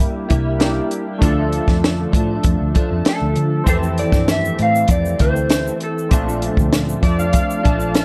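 Laid-back and sunny, this 98 BPM indie and bedroom pop excerpt in F major pairs a clean, compressed electric guitar with ensemble chorus and vibrato, warbling detuned lo-fi synth keys on tape, and a dark, round, foam-muted fingered bass, joined at 0.3 seconds by a dry, up-front cocktail drum kit with a high-tuned snare and punchy kick, while a slightly broken-up guitar through a small old amp carries a picked melody with tape echo from 3.1 to 6.4 seconds, a grainy egg shaker enters at 3.7 seconds, and the keys add a fill near the close, all over C7, Dm, Fmaj7 and Bbmaj7 in a gritty, dry recording.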